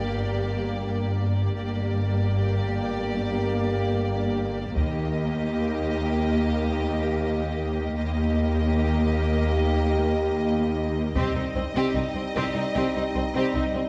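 Opening straight into a heroic yet dark cinematic orchestral passage cut from a longer score, lush bowed violins carry a focused, vibrato-laden melody over a second violin line in the background, smooth, even violas, mellow, distant French horns holding sustained chords, warm cellos and distant double basses anchoring the bass, while a taiko ensemble struck with hard sticks breaks in at 4.8 and again at 11.2 seconds, all set in a moderate scoring-stage reverb with a dark production.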